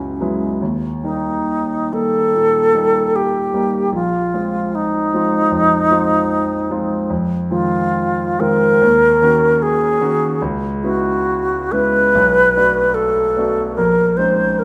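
This is an impressionist classical duo for alto flute and grand piano, luminous and dreamy in mood, with a loose, rubato feel over uneven beats in four. The alto flute carries the melody from start to finish, sitting up front with an airy, bright tone, vibrato, tongued notes and lifted highs across its range from C#4 to C5. Alongside it, also up front, the grand piano plays a clear, polished accompaniment reaching from deep A#1 up to Gb4, its long sustain letting the harmonies ring. The chords drift through suspended and minor-seventh colours, moving from F#9sus4 through Fm7, Ebm7 and Dbm7 before settling on Bbm11 at 13.8 seconds. A wet recital hall reverb surrounds the pair, and the passage, tuned slightly high to A4 = 441 Hz, is cut from a longer piece.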